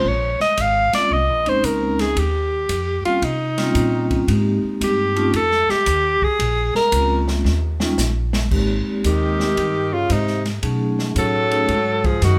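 A relaxed swing at 113 BPM in 4/4, with swung eighths, sets a playful small-group jazz mood in Ab major in this short cut from a longer piece. An up-front alto saxophone carries the melody as a clear solo, rich with vibrato and scooped notes. A vibraphone played with soft mallets adds ringing, metallic accompaniment with a medium motor shimmer. Underneath, a pizzicato upright bass on gut strings sounds woody and thumpy, while an airy open drum kit with dark cymbals, a medium-tuned snare and a boomy kick sits lower in the mix. A drum fill at 7.5 seconds leads into a new section, and at 9.1 seconds a mellow tenor saxophone slips in with a smooth-topped second line, lightly wavering and bending into its notes. The band plays live together in one room with light reverb, giving the performance a relaxed, natural presence.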